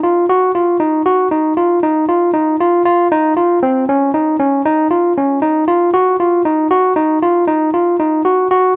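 Driving and intricate, this short excerpt cut from a longer progressive instrumental piece moves in an asymmetric 11/8 metre with a straight feel. A single tine electric piano carries the whole passage alone, playing from the start to 8.7 seconds within a compact middle register. Its tone is bright and barky, clean and direct, sitting up front in the mix. A tape echo trails its notes, adding a sense of repetition to the odd-metre phrasing. The studio room lends a moderate reverb that keeps the sound focused and present.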